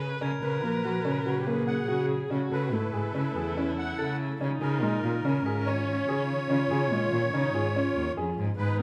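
Hopeful yet restless, this short excerpt cut from a longer piece of contemporary chamber music moves at 143 BPM in an uneven 5/4 meter with a straight feel, centred on Db mixolydian as the harmony passes from Gb to Amaj7 and on to Dbadd9. A reedy musette accordion carries the melody from 0.4 seconds, its wet tuning giving a shimmering, airy edge. Beneath it, a clear concert grand piano plays arpeggios with deep bass and short sustain, while a bright, biting cello holds the bass line close and up front with vibrato, a nasal intensity and an airy bow. A warm viola adds an expressive second line with vibrato and portamento. A very quiet, dark chamber string section lays soft-attacked sustained chords with a smooth top, and bell-like crotales played with plastic mallets ring high in the background until 7.2 seconds. The moderate recital hall reverb and a dark, warm production give the ensemble a gentle sense of space.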